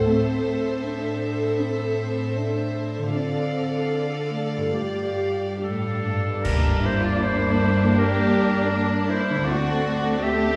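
A floating, sul tasto violin melody carries this longing, sorrowful orchestral film cue in a free rubato, over a warm, intimate second violin line, a woody viola accompaniment, a rich cello bass, dark French horn chords and a bright, ringing harp playing arpeggios, while a cymbal swell with clash cymbals and bass drum comes in at 3.1 seconds, a clear solo clarinet line enters at 5.6 seconds, and a distant double bass section joins with an ensemble accent at 6.5 seconds, all set in the wet reverberation of a church or concert hall.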